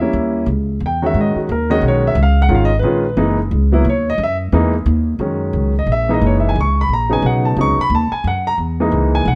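A dark, lightly reverberant production frames this short, relaxed jazz piano trio passage, a 9.4-second cut from a longer piece that swings in 3/4 at 177 BPM in F# mixolydian. The concert grand carries the melody and solos throughout, intimate and natural with audible action noise, deep bass and plate reverb. Beside it, the upright bass plays pizzicato, woody and thumpy, both parts sitting up front over changes that move from D#7b9 through G#m7 and C#13 to F#13.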